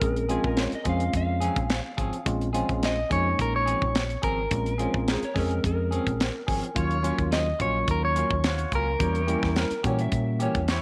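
This short soul blues fragment opens with four parts at once: a tight funk drum kit with a high-tuned snare and a dry, up-front kick and hi-hat; a deep, round dub bass, fingered and amped; a tine electric piano comping through its own built-in speakers; and a lead electric guitar at the edge of break-up, picked and up front, with spring reverb giving its melody a soulful, mournful edge. At 0.3 seconds a slide guitar with a slightly broken-up tone adds a quieter second line. A clean, fingered electric guitar enters at the same moment with stabs. The straight-eighth groove sits on a brooding Bbm9 before moving to Ebm9, and at 6.7 seconds a clear, punchy horn section with a vintage pop character joins on sustained chords. The harmony then darkens onto an Edim7 as the passage is cut off, all set in a light room reverb.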